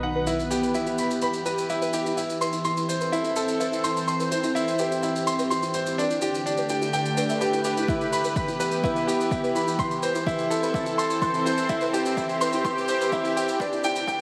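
A bright, brilliant concert grand piano carries an up-front riff through tape echo in this moving, cinematic piano and strings electronica, cut from a longer piece at 126 BPM in 4/4 over Em, Am and Gadd9 chords. A lush, thick unison pad of detuned sawtooth holds slow-attack chords with chorus, while a soft, round pluck sits in the background with arpeggios colored by 12-bit sampler grit, sidechain pumping and echo. A warm shaker with a rolled-off top runs throughout, and an overdriven, punchy electronic kick enters at 7.9 s to push the build-up, all set in a lush hall reverb.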